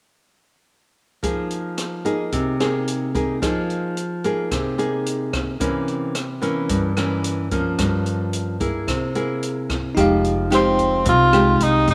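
Intimate and wistful, this short bossa nova excerpt in F minor at 110 BPM opens at 1.2 s with a full-bodied, fingerpicked nylon-string guitar up front over a distant, roomy jazz kit of hi-hat, rim click and boomy kick; at 9.9 s a very quiet, bell-like electric piano slips in, joined by a woody pizzicato upright bass, and at 10.5 s a mellow, breathy tenor saxophone takes the solo melody with light vibrato and scooped notes, the whole scene sitting in a moderate echo-chamber reverb.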